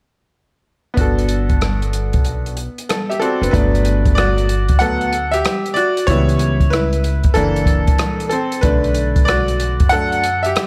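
Heard through a studio reverb, this warm, cool jazz-hop fragment of a longer hip hop piece sets a bright, brilliant concert grand piano up front beside a woody, thumpy pizzicato upright bass on gut strings and a dark, smooth small-room jazz kit of hi-hat, rim click and boomy kick swung on the 16ths, with the piano taking a solo from 3.5 s over Gmaj9 moving to C#m7b5, F#7alt and Bm7.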